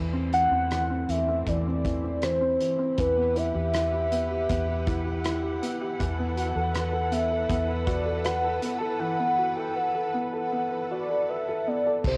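A felt-muted upright piano, a lush bowed string section and a round, foam-muted electric bass open this melancholic pop ballad, with the soft, intimate piano sitting up front and both piano and strings carrying a cassette tape grain. From 0.3 s a velvety synth lead takes the melody, its sawtooth-and-triangle unison tone coloured by chorus, vibrato and tape, while a loose indie drum kit adds a punchy kick, rim clicks, hi-hat and dark crash cymbals in a pumping room. Moderate spring reverb and a homespun cassette recording lend an emotional closeness as the chords move from Am/E through Emadd9 to Esus4.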